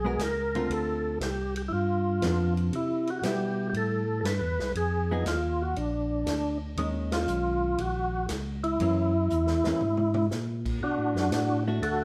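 Soul jazz organ trio with a late-night, bluesy swing, caught live in one room with a stone-room reverb: a full, percussive tonewheel organ carries the melody up front, its second-harmonic percussion and lightly overdriven tone turning through a slow rotary speaker with chorus vibrato. A fat organ bass line with key click, also gritty and slowly rotating, sits beneath a dark, clean, compressed hollow-body electric guitar comping in the background. A punchy vintage kit with a rolled-off top enters at 0.2 s, the band hits an accent at 7.0 s, and a drum fill runs from 9.3 s to 10.3 s, ahead of a new section at 10.8 s.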